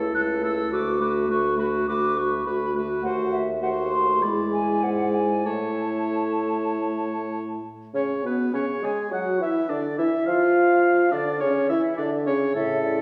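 In a rubato 4/4 at 94-106 BPM, this lively, cheerful excerpt from a quick classical-period movement for wind quintet sets a hollow, pure silver concert flute with vibrato and a crisp attack on the melody from 0.1 s, over an oboe second line, a clear, present clarinet and a warm French horn in accompaniment, and a mellow, up-front bassoon bass, turning from A major to F# minor at 7.9 s within the wet reverb of a church or concert hall.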